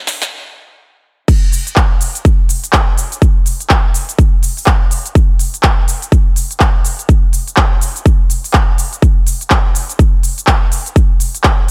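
A punchy, overdriven electronic kick drum lands up front at 1.3 s as this swaggering, aggressive house excerpt drops after a short build-up of drum fill, filter sweep and stop, joining a layered big-room dance drum kit of snare, crisp hi-hats, handclaps, shaker and crash cymbal that also carries overdrive, all set in a high-passed digital ambience with a swung 16th-note feel.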